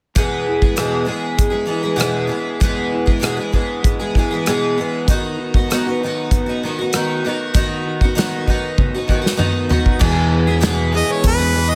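A shimmering, octave-doubled twelve-string acoustic guitar with lush chorus anchors this hopeful, open-road folk and heartland rock excerpt at 98 BPM in E major, joined by a slightly broken-up electric guitar riff and an up-front country drum kit with dark cymbals whose fill at 8.8 seconds ushers in a fingered electric bass at 10.0 seconds, before a close-miked harmonica with slapback echo and light vibrato enters at 11.0 seconds, all in a small room with light reverb.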